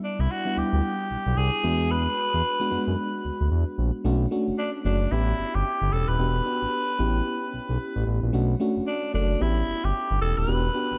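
Sixteenth notes swing lightly over a steady 4/4 groove in this slick, confident new jack swing R&B excerpt, with a smooth synth bass sitting up front from 0.2 s, its detuned sawtooth and square tones edged by ring modulation. A dark FM electric piano with a noise layer supplies decaying chords, moving from Cmaj9 and E9 into a Bm7, A7 and Em7 progression once the second section begins at 4.0 s. A raspy, gritty tenor saxophone, also up front, carries the vintage-toned solo melody through analog delay, and the dreamy mix is soaked in plate reverb.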